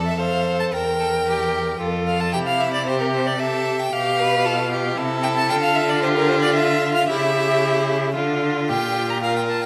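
A clear, focused violin carries the melody from 0.1 s in this dramatic, restless classical-period string quartet movement at a quick 113 BPM in 3/4, cut from a longer piece, with a smooth, up-front second violin and an even viola close behind, a rich, distant yet prominent cello bowing the bass with vibrato, harmony passing through Edim and C#dim on its way to Dm and Gm7/Bb, and moderate scoring-stage reverb around the ensemble.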